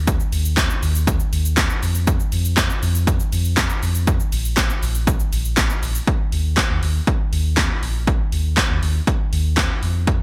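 Dance-pop at 120 BPM with a euphoric, summery mood, this short excerpt pairs a deep, full sub bass with octave, sine-and-triangle in tone with a fast attack and sustained notes pumping against the sidechain from 0.0 seconds, with an up-front, overdriven analog drum machine entering at 0.1 seconds, its punchy kick and snare, handclaps, hi-hat and shaker carrying a short room on the snare, clap and hats, all in a dry mix that moves into a new section at 6.1 seconds.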